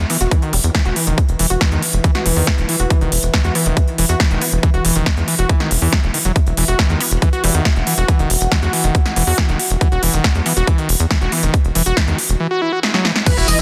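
A background drone of shifting, resonant overtones opens this hypnotic, driving psychedelic trance excerpt in E harmonic minor, sitting under a tight, punchy sawtooth sequencer bass that sits up front at 139 BPM in a straight 4/4. Almost immediately an overdriven kick with a tight, layered snap and a big-room dance kit with a punchy snare, crisp hats and crash cymbal join, both prominent in the mix. A squelchy, gritty acid bass riff runs through a long filter sweep, carrying distortion and delay, while a juicy, bright blip pluck adds a second line in the background with chorus and delay. After a drum fill at 12.8 seconds, an electronic impact lands at 13.3 seconds alongside a jingly tambourine and a screaming, guitar-like lead with vibrato, chorus and phaser, and a soft, airy breathy pad appears just before the cut. The drone, pluck, acid bass, lead and pad all pump against the kick, and the dense, heavily limited master keeps the sound close and dry.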